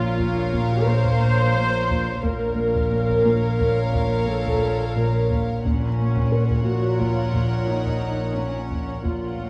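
In a straight 5/4 at 88 BPM, this mysterious, uneasy suspense cue in Bb minor unfolds as a brief cut from a longer film score, its harmony shifting from Bbm to Ebm7/Bb at 5.6 seconds. Two clear violin sections float in a pure, sul tasto wash, one carrying a faint melody between F5 and Gb5 while the other holds a second line from Bb4 to Db5. Up front, a dark viola section with light vibrato gives intimate, close accompaniment, while a dark cello section plays a riff between Bb2 and Bb3 from the background. A rich double bass section on Bb1 and a softer, warm cello section on Bb2 anchor the low end, and a very quiet felt-muted upright piano adds a mellow, vintage texture on Bb4. From 0.2 seconds a taiko ensemble struck with heavy sticks rumbles in the background, all set in a wet recital hall reverb with a dark, warm production and vinyl crackle.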